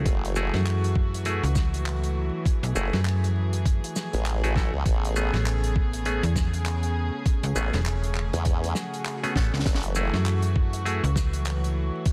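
Floating, distant strings hold sustained chords with 12-bit sampler grit and sidechain pumping beside nasal, hollow clav stabs with dub echo and a snappy, metallic FM slap bass, soon joined by a chorused formant-sweep wobble bass, a crisp fusion kit of handclaps, hi-hat, shaker and high-tuned snare, and a thumpy, pitched-down electronic kick up front, in this playful, gritty 100 BPM glitch hop piece in F# minor with swung 16ths that moves from F#m9 to Amaj9 before a background electronic swell enters at 8.8 seconds and a drum fill lands at 9.4 seconds.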